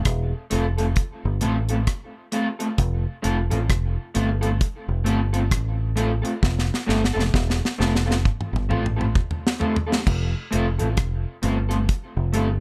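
A laid-back roots reggae groove rolls at 66 BPM in 4/4 with swung sixteenths, resting on F major in this uplifting short cut from a longer piece. A round, punchy fingered electric bass sits up front in a deep, direct register, while a dry acoustic kit with a tight kick, high-tuned snare, rim clicks, hi-hat, toms and crash cymbal moves into a fill from 6.4 to 10.1 seconds. A dark, slightly broken-up electric guitar, played with the fingers, adds accompaniment coloured by subtle chorus and tape echo, all within light reverb.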